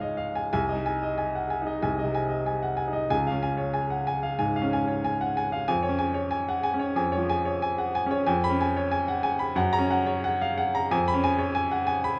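An upright piano carries this brief romantic character piece alone, its woody, vintage tone sitting up front with a clear, smooth edge. Cut from a longer classical work, the 12.2-second passage moves at 92 BPM in 4/4 with a rubato feel, giving the phrasing a passionate, warm mood. The playing spans the range from C2 to B5. Rooted in Db major, the harmony opens on Db and Ab/C, then shifts at 8.3 seconds to C#7/E#, touches F#, and returns to C#7/E# before the cut. A moderate recital hall reverb with a 1.3-second decay surrounds the instrument with a gentle sense of space.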